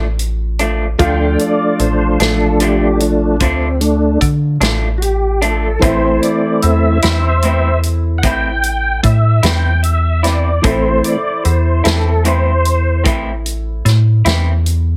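Soulful and smoky, this slow blues in a straight 12/8 is a short cut from a longer piece, with a tonewheel organ stepping forward as the lead voice from 1.0 s to 13.0 s. The organ sounds clear and clean, up front in the mix, its sustained chords colored by a slow rotary speaker and chorus vibrato. Beneath it, a metallic FM bass with a fast attack and decaying digital tone anchors the low end, while a natural country drum kit plays hi-hat, a punchy kick and a medium-tuned snare in an acoustic studio room. An electric guitar through a small old amp adds picked accompaniment, slightly broken-up and lo-fi with a tremolo effect, and a concert grand piano sits intimately in the background with audible action noise and deep bass. The harmony moves from D minor to A minor at 5.8 s. Light reverb and a heavily compressed, radio-like sound shape the whole track.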